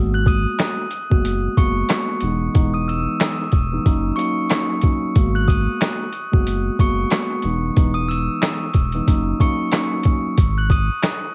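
Moody and dark, this short boom-bap hip-hop cut from a longer piece moves with a swung sixteenth-note feel over a home cassette recording with little reverb. A mellow tine electric piano sits up front with a clean tone through its built-in speakers, filtered and tape-coloured as it carries the chords. Those chords cycle from G#m9 through Emaj7 and D#m7/F#, then land on G#5 at 10.4 s. Beneath them, a deep, round sine sub bass holds sustained notes with a fast attack. A glockenspiel played with soft plastic mallets rings out a bell-like, metallic melody high above, also filtered and tape-treated. The sampler-style drum kit enters at 0.3 s and is the loudest part: compressed, pitched down and gritty, with a thumpy kick, a medium-tuned snare, hi-hat and handclaps re-recorded in a large room.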